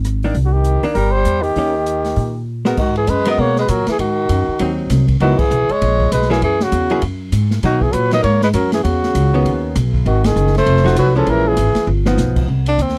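A dry, close studio sound in a 1970s vein frames this moody, swinging small-group jazz, cut from a longer piece. A woody, pizzicato upright bass sits up front with an airy acoustic drum kit of dark cymbals and boomy kick, while a clean, compressed hollow-body archtop guitar accompanies. A smooth-topped trumpet with scooped notes and vibrato carries the melody from 0.5 seconds over a breathy, subtone tenor saxophone second line, and the band hits accents at 5.4 and 10.2 seconds between short drum fills.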